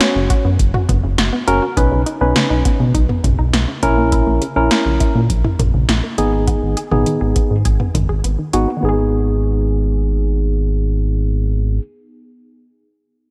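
Synth-pop at 102 BPM in G# minor, cool and driving, cut from a longer piece and moving through F#sus4, Badd9, A#dim and G#m. A worn, slightly out-of-tune tine electric piano carries the accompaniment up front alongside a deep, dark analog bass with a fast attack, while a lush, detuned unison pluck spins arpeggios beneath a slapback echo. The electro analog drum machine drives with a punchy snare, metallic hats and toms under gated reverb until it drops out at 8.7 s, leaving the keys, bass and pluck to carry the second section in a light reverb.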